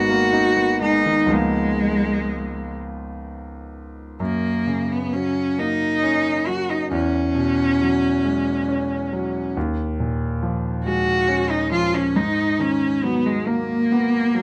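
A single bowed cello carries the melody, its rich, focused tone shaded with vibrato and placed up front in this dreamy, luminous impressionist duo cut from a longer piece. Beneath it, a clear concert grand piano supplies the accompaniment, reaching into a deep, natural bass while sharing the close foreground. The music moves in a compound 6/8 metre with a rubato feel, both instruments sounding together from the opening through 14.4 seconds. Harmonies drift through colorful extended chords, starting on G#m9 and C#13, then opening at 4.2 seconds into a longer passage that passes through F#6, E69 and D#9sus4 before returning to G#m9. Close, detailed microphones and a light reverb give the recording an intimate, softly glowing atmosphere.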